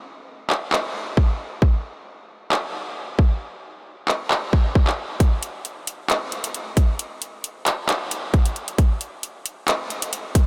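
A dreamy mix soaked in huge ambient reverb gives this dark, menacing hip hop excerpt a cavernous backdrop, set at 134 BPM in 4/4 with a half-time feel. An electronic trap drum kit enters at 0.5 seconds and sits up front, its hard-clipped kick, metallic hi-hats and handclaps carrying the excerpt. The opening break runs to 5.2 seconds, and the hats drop out from 3.4 seconds before the full kit carries on to the end at 10.5 seconds.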